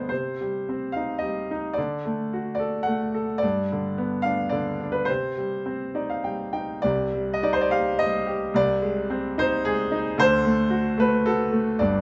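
A clear, boxy grand piano sits up front with short sustain in this cool, bittersweet classical excerpt, playing a lyrical solo in C harmonic minor at 101-115 BPM in a rubato 3/4, moving through Cm, D, G and Ab/C to D7 across a range from G1 to G5, with a brief fill from 5.7 to 6.8 seconds before the opening phrase returns, all in a light reverb and a soft top end.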